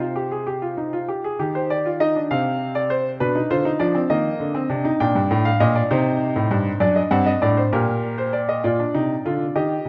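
Joyful and elegant, this short classical excerpt from a longer baroque-style three-part fugue in 6/8 features a solo grand piano, smooth and vintage in tone and placed up front, ranging from F#2 to G5 as its harmonies move from C minor through diminished and seventh chords to a closing B-flat, all carried by a moderate concert hall reverb.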